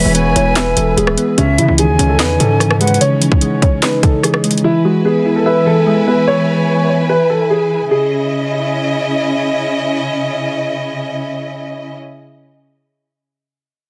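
A brooding, dark trap piece in C# minor at 147 BPM with a half-time feel opens on a worn, boxy grand piano melody with delay. From the first moment it sounds together with an airy, vibrato-laden flute line, round, chorused electric-piano-like synth keys, lush bowed strings and a saturated, distorted 808-style bass, while an overdriven trap kit of hard-clipped kick, sharp snare, metallic hats, rim clicks and handclaps enters at 0.1 seconds, sitting up front in a small room ambience. The flute and 808 stop at 3.0 seconds and the drums at 4.6 seconds, leaving piano, keys and strings to carry chords moving between E and C#madd9 through a dense, heavily limited master.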